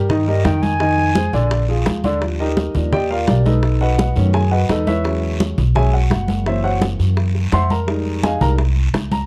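Dark, lightly reverberant production frames this brief, lively cut from a longer Afro-Cuban jazz piece, moving at 170 BPM in a straight 4/4 with a sophisticated air. An up-front baby grand piano with a natural tone plays accompaniment throughout, while a woody, growly pizzicato upright bass on steel strings sits prominently underneath. Close, dry hand percussion fills out the groove: bright, damped congas with a thin skin, tight high-tuned bongos played with soft hands, and a raspy guiro low in the mix. A silver concert flute, pure and warm with vibrato and a soft attack, carries a short second line from 0.3 to 1.5 seconds as the opening flute solo passes over a rootless Cm7, then Fm7 and Bb7. From 2.2 seconds the piano takes the solo, travelling through colorful changes such as Ebmaj9, B7, E6 and Gb7#11 before settling on Fm7.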